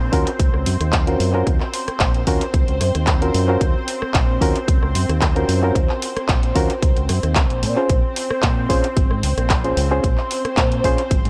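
An echo-heavy mix in light digital ambience frames this 11.3-second nu-disco excerpt, a cosmic, groovy cut at 112 BPM in Eb dorian, moving from Ebm7 to Bbm9 at 7.6 s. A punchy layered kick and a house kit of bright hi-hats, handclaps and delayed rim clicks drive the straight 4/4 beat, while a fingered electric bass with envelope filter and tube saturation anchors the low end. A barky, reedy electric piano heard through its built-in speakers carries a filter sweep and analog delay, and a thick, detuned sawtooth unison pad with chorus and phaser holds slow-attack chords, the pad, piano and bass all breathing with sidechain pumping.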